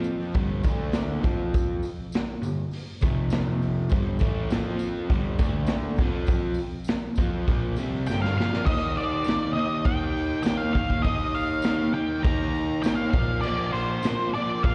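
Garage rock at 101 BPM in a menacing, gritty mood, this cut from a longer piece sets a crunchy, double-tracked overdriven guitar riff with slapback echo against an up-front, saturated drum kit with a punchy kick and vintage 12-bit sampler grit, with a jingly tambourine tucked in the background and, from 8.1 seconds, a dark octave-fuzz lead guitar melody, all heard as a live gig through the venue's PA on cassette tape with recital hall reverb.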